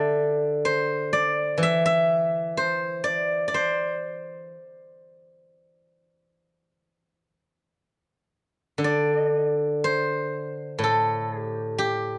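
Chinese traditional music for solo plucked strings, this short excerpt is cut from a longer piece and carries a pastoral, serene mood. A steel-string zither plays alone for the full 12.2 seconds, plucked with fingerpicks and ranging from A2 up to C6. Its tone is silvery and ringing, and the instrument sits up front in the sound. The rubato feel lets the phrasing breathe freely over a 4/4 frame. The close, detailed microphones catch the strings clearly, with a light reverb adding a little space, and the music moves into a new section at 7.8 seconds.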